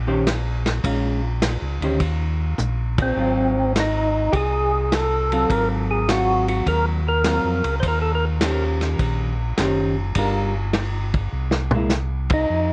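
A swing feel at 103 BPM in 4/4 drives this bluesy soul jazz organ trio, cut from a longer piece and built on chords moving from Eb6 through Bbm7, Ab13 and Gm7 to a closing Caug7. A mellow, round tonewheel organ carries the bass line with audible key click and a slow rotary speaker, while a dark, clean hollow-body electric guitar supplies picked accompaniment bathed in plate reverb. The acoustic drum kit sits up front with a tight kick, medium-tuned snare, dark cymbals and a rolled-off top, roughened by vintage 12-bit sampler grit, and it plays fills around 2.6 seconds and near the end. A second, fat and lightly overdriven organ takes the melody at 3.0 seconds, its percussive third-harmonic attack and vibrato spun through a slow rotary speaker with plate reverb and analog delay, returning briefly at 12.3 seconds after a band accent. The whole mix lives in a modest small room and carries the worn, warbling pitch drift of old cassette tape.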